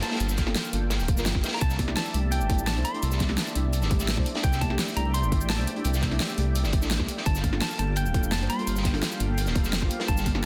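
A dense, heavily limited modern mix with light studio reverb frames this lush, dreamy liquid drum and bass excerpt at 170 BPM in C mixolydian, moving from Gm9 to C6 and back. A bright, clean semi-hollow electric guitar carries the melody through dub echo over deep mellow chord stabs with chorus and tape echo, a smooth analog pad, and a dark, rumbling detuned saw bass that sits up front from 0.2 seconds. A tight electronic kick arrives at 0.4 seconds beneath a gritty, saturated breakbeat kit with filtered hats and snare and a layered pop kit with a fat snare and cabasa, while very quiet, distant bongos and congas join at 1.6 seconds.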